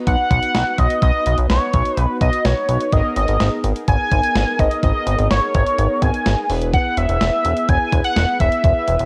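Lightly reverberant with a cassette-tape haze, this home-recorded synth-pop excerpt carries a nocturnal, melancholic mood in a straight 4/4. An octave-doubled lead sits up front with the melody from 0.1 seconds, its detuned sawtooth and triangle tones made bright and retro by ring modulation, chorus and a phaser. Beneath it, a glossy, nasal synth bass mixes pulse-width-modulated pulse and sawtooth waves with a filter pluck and a moving notch, chorused and sitting up front. Further back, an analog synth brass plays accompaniment, fat and full-bodied yet mellow, built from detuned sawtooth and wave-folded sine with a filter sweep and chorus. A clean 12-bit drum machine, sampler-like and up front, drives the groove with a thumpy kick, a medium-tuned snare and hi-hat. The harmony moves from B to G#madd9 at 2.9 seconds and on to E at 6.5 seconds.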